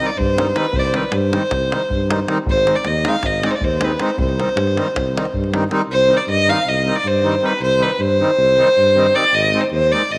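A brisk 9/8 meter at 314 eighth-note beats per minute, played straight, drives this fiery, virtuosic Balkan wedding-band folk excerpt in C harmonic minor, moving between C minor and A-flat. A single bowed fiddle carries the melody up front with a rich, focused tone, light vibrato and a slapback echo, over a reedy accordion with slow beating and a warm, soft-attacked tuba with a smooth top and light vibrato holding the bass. A deep, close and dry davul provides the percussion until 5.8 s, and the whole band sits in a moderate plate reverb.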